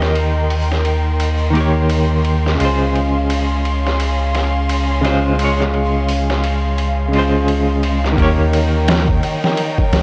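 A worn, warbling cassette-tape sound with a dulled top end and light digital reverb frames this brooding, cinematic trip hop excerpt at 86 BPM in 4/4, with a 60% swing on the sixteenths. A sampler-style drum kit, compressed, pitched down and gritty, sets a thumpy kick and medium-tuned snare against hi-hat and ride cymbal, all filtered to thin the low end. Beneath it, a soft dub sub bass sits up front, deep and round with a fast attack and sustained tone, hovering between Db2 and Eb2. A clean, bright semi-hollow electric guitar picks out the accompaniment through tremolo, a low-pass filter and tape echo, while a distant, lush violin section holds smooth, bowed chords with vibrato. The harmony moves from Eb7 to Dbmaj7 at 2.6 seconds and returns to Eb7 at 8.2 seconds as a new section begins, with all four parts playing throughout.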